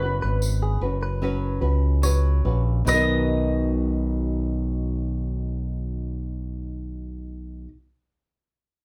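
In a straight 4/4 at about 70-78 BPM, this short acoustic pop excerpt in B major has a heartfelt, easy-going mood. It slows down over its first 2.9 seconds as the harmony moves from F#sus4 to Bmaj7. A woody mandolin carries the melody in double strings, lifted by a slapback echo. Beneath it, a fingerpicked nylon-string guitar sits up front with a classical touch, and a bright fingered electric bass holds the low end with a direct presence. A clean, twangy electric guitar picks compressed arpeggios until 5.4 seconds, while a jingly tambourine sounds close in the opening stretch. The ensemble plays in a small, reverberant room whose ambience is heard from further back.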